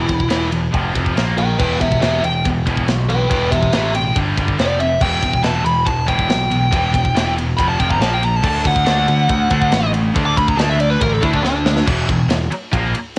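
A high-gain lead guitar solos through this dark, relentless heavy metal passage in E minor at 140 BPM, playing over a scooped, double-tracked rhythm guitar that drives a bright, distorted riff up front. Beneath them a growling picked electric bass, overdriven and direct, anchors the low end while a tight metal drum kit with a medium-tuned snare, tight kick, crash and ride sits mid-forward with a rolled-off top. The lead's picked melody ranges from D4 to D6, its distortion trailed by tape echo, and the chords move through power chords on E, F and A# before settling on Em, later touching G5 and eventually reaching D. A drum fill at 11.4 seconds leads into a brief final stretch where the solo stops at 11.9 seconds and the band lands back on E5. The sound is dry and close, with the lossy artefacts of a home cassette recording giving the guitars and drums a worn edge.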